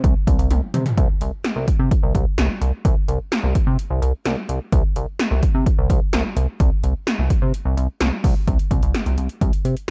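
This bright, upbeat synth-pop fragment opens with 80s electronic pad drums and a chorused synth bass sounding together from the first moment, moving at 128 BPM in a straight 4/4. A drum fill arrives at 0.5 seconds, and by 1.0 seconds the groove settles in, carrying through to a new section that begins at 8.5 seconds. The analog-flavoured drum kit sits up front, with a punchy kick, metallic hi-hats, and a gated snare and toms bathed in gated reverb. The bass, also forward in the mix, ranges from C2 to C3 with a glossy, nasal pulse-wave and sawtooth tone, shaped by pulse-width modulation, a filter pluck, a moving notch, a fast attack and sustained notes thickened by chorus. Overall the production is dark and warm, with little reverb beyond the drums, giving the retro pairing a tight, energetic feel.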